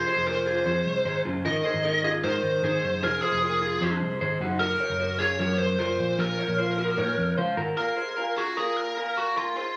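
A bright, overdriven lead guitar sings a bittersweet melody over a slightly broken-up, lo-fi electric guitar playing arpeggios through a small old amp with subtle chorus and tape echo, giving this jangly indie pop piece a wistful, straight-ahead feel. Underneath, a dark, round, foam-muted electric bass holds the low end until it drops out at 7.7 s, just before a brief new section at 7.8 s that settles on a bare Bb5 chord. The sound is roomy and intimate, captured on a phone in the room with moderate studio reverb, and the passage is cut from a longer piece.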